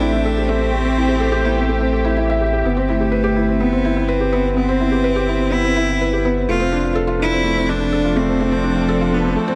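Piano and strings electronica with a luminous, tender mood, cut from a longer piece and played with a straight feel in 4/4. A felt-muted upright piano sits up front with a riff, its mellow, intimate tone carrying audible action noise and a touch of delay. Close beside it, a single rich cello sings the melody in a smooth, even bowed line with vibrato, also treated with delay. Behind them, a muted studio string section holds sustained chords, veiled and distant under con sordino bowing, while a round analog bass with a deep, dark, sine-like tone anchors the low end until 9.4 seconds. The harmony moves from Am7 to Cmaj7/G at 2.6 seconds and settles on F6 at 6.5 seconds, all within light reverb and small room ambience.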